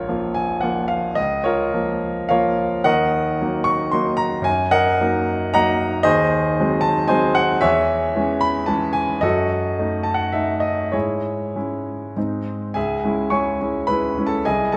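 Warm and passionate, this romantic character piece for solo piano moves in a flexible 3/4 with rubato, ranging between 95 and 117 BPM, and is cut from a longer piece. A clear, natural grand piano sits up front, spanning Bb1 to Db6, opening in Bb minor and passing through Eb minor before settling into C# minor from 6.1 s. A G# chord at 12.2 s resolves to C# minor at 12.8 s as a new section begins, all within a moderate concert hall reverb.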